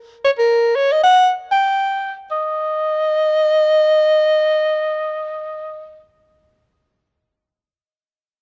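A breathy, whispered soprano saxophone enters alone at 0.2 s and plays up front in free time, easing from an opening slowdown through this brief, cool late-night jazz fragment with a mellow, soft-attacked tone and light vibrato, intimate in a dry, close 1970s-style studio sound touched by light small-room reverb until it stops at 6.0 s.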